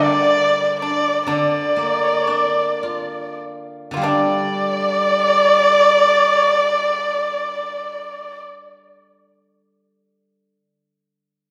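A dark, nasal erhu carries a wistful, graceful melody up front with light vibrato and portamento, while a second, boxy erhu sings expressively in the background, a dry, percussive pipa adds its own line and a silvery, ringing steel-string zither accompanies, the Chinese chamber ensemble slowing through the first 4.0 seconds and heard from further back in a reverberant recital hall until the erhus and pipa fall away by 8.5 seconds, leaving the zither to sound on to 10.5 seconds in this fragment of a longer traditional piece.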